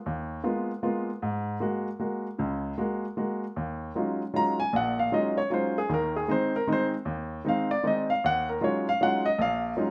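Jazz for solo baby grand piano in a swung 3/4 at 154 BPM, cool and intense in mood, cut from a longer piece and settling into E-flat dorian from 3.6 seconds. The clear, natural-sounding piano sits up front with a short sustain, ranging from Bb1 to Bb5 across chords such as G#m69, F#add9/G#, Ebm11 and Ab/Eb. A moderate large-studio reverb gives the instrument a sense of space.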